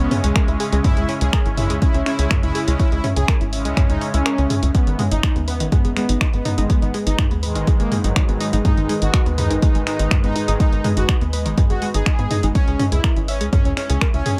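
Melodic techno at 123 BPM in G# minor, hypnotic and cinematic, this excerpt is driven by an overdriven, up-front electronic kick and a tight, detuned sawtooth sequencer bass, with a punchy analog drum machine of finger snaps, hi-hat and toms re-recorded in a small room, and sidechain pumping on the bass, the drum machine's hats and toms, and the synths. A bold, fat analog synth brass carries the melody over a warbling, lo-fi, wave-folded pluck arpeggio with digital delay, nasal brassy pad stabs that stop at 10.6 s, and a deep, moody ambient pad sustaining chords in the background, while a very quiet resonant drone with moving overtones enters at 0.7 s. The kick drops out briefly at 4.3 s and returns at 4.7 s just as the harmony moves from C#m to G#m, returning to C#m at 12.6 s.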